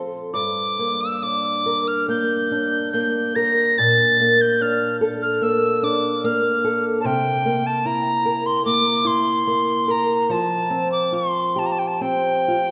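Loose and rubato with uneven beats around 72 BPM in 4/4, this Celtic slow air in G dorian carries a longing, haunting mood through a short passage cut from a longer piece. A dark, boxy, fingerpicked old ladder-braced acoustic guitar opens at 0.0 seconds, finger squeaks audible up front, and an airy metal tin whistle enters at 0.3 seconds with a straight, tongued tone, chiff and lifted highs. The harmony moves from Gm through Bbmaj7 and C7 to Fsus2, all within a wet church reverb.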